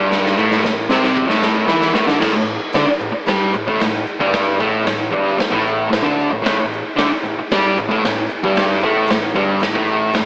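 Raw and swaggering, this excerpt of straight-ahead garage rock at 114 BPM opens on an A5 chord as an up-front, double-tracked fuzz guitar riffs from G2 to G4, a growling picked electric bass sits overdriven in the background, a gritty, saturated drum kit with a punchy kick and medium-tuned snare plays a fill until 2.2 seconds in its bright stone room, and a grainy egg shaker ticks very quietly close by, all bathed in moderate spring reverb with a cassette-tape, AM-radio sound.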